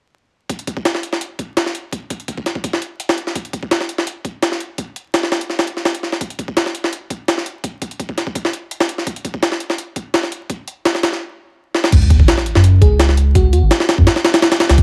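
A haze of digital vinyl crackle sits over this short, frenetic yet nostalgic drum and bass cut from a longer jungle piece. Up front, a sampler-style drum kit sounds gritty and pitched up, its thumpy kick, high-tuned snare, hi-hat and crash cymbal compressed and tape-warm, each thinned by a high-pass filter. The drums carry the track until a fill at 11.7 seconds leads into the drop at 11.9 seconds, where a deep, round, soft dub sub bass arrives alongside a very quiet electronic sub drop impact. Shortly after, at 12.8 seconds, a bell-like FM electric piano sparkles in the background, full-bodied and mellow, with a noise layer, chorus, tremolo and dub echo shaping its brief, decaying notes.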